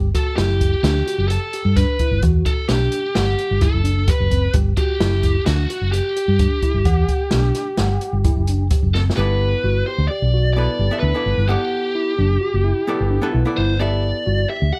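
Progressive instrumental band music in 5/4 at 130 BPM, this bright, driving excerpt sits in G major with a straight feel and light reverb. A mellow tine electric piano spins clean arpeggios in the background throughout, while a round, hollow-body fingered electric bass sits up front with a dark, amped tone. The open jazz kit, recorded in a small room with a boomy kick, medium-tuned snare and rolled-off top, plays hi-hat, kick and snare until a drum fill at 8.9 s, then stops at 9.2 s. Over this, a biting lead guitar with overdrive carries the melody up front, picked and warm in character. At 9.2 s the harmony moves from a Gmaj7 that omits its third to a full Gmaj7 as a miked archtop guitar enters with clean, picked accompaniment in a dark, hollow-body voice.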